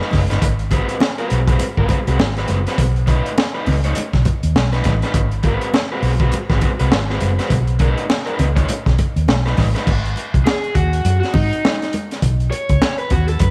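This funky, energetic excerpt from a longer funk piece opens with a crunchy breakbeat drum kit and a raw garage guitar together at the start, moving at 102 BPM in 4/4 with a 60% swing on the sixteenths. The drums sit up front, with a punchy kick, a high-tuned snare, dark cymbals and a saturated, gritty character whose top end is rolled off, while the dark, picked guitar comps through overdrive and spring reverb over alternating Ab7#9 and B9 chords. A vintage muted fingered electric bass joins almost immediately, round and foam-muted in the low register, alongside very quiet congas with bright, thin skins struck by hard hands, heard close and dry. At 9.9 seconds the harmony shifts to Ab7(no3) and Badd9 as an overdriven electric guitar solo takes the spotlight through to the end at 13.5 seconds. The mix is bathed in light studio reverb, giving the small-room kit and amped bass a cohesive, energetic groove.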